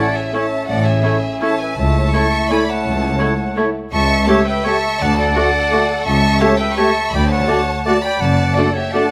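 A festive, sweeping orchestral ballroom waltz excerpt in 3/4 at 167 BPM opens with rich, expressive bowed violins carrying the melody over a second violin line, an airy crisp flute, a punchy oboe, a smooth clarinet and a very quiet, focused viola section, with a warm bassoon accompanying and dark, distant French horns sustaining chords in the background, before cellos and double basses enter at 0.7 s as the rubato-inflected phrase turns from A major toward D major at 3.9 s in a moderate recital-hall reverb.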